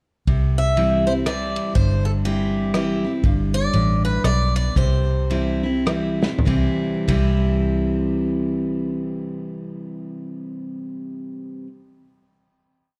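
A boxy swing-style acoustic guitar with fresh strings picks a motif-based melody from 0.6 to 5.8 seconds over a bright, full-bodied dreadnought strumming alternating bass and chords with bass runs, a round, foam-muted vintage electric bass playing roots and fifths with walk-ups, and a smooth, dark country drum kit in a 3/4 groove, giving this sunny, heartfelt honky-tonk and classic country piece in C major at 97-122 BPM a swung lilt, a slowdown and a drum fill before a final chord held until 10.2 seconds in recital hall reverb.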